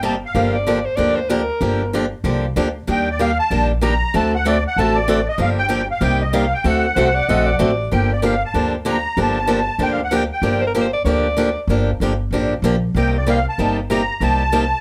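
A light reverb surrounds this cut from a longer piece, with the accordion, guitar and upright bass sitting up front. It is acoustic string swing in the jazz manouche style, swinging and virtuosic, moving at 191 BPM in 4/4 with a swung eighth-note feel in G minor. The bright, boxy picked acoustic guitar carries the accompaniment throughout, over a woody, thumpy pizzicato upright bass on gut strings. A reedy musette accordion with shimmering tuning takes the melody, its airy tone set in plate reverb and carrying the long central phrase from 2.9 to 10.6 seconds. A clear alto saxophone adds a second line in short solo phrases with vibrato and a soft attack, first appearing at 0.5 seconds. The harmony cycles through Gm7, Ebmaj7, D7 and Cm7 across two matching sections, the second beginning at 7.9 seconds.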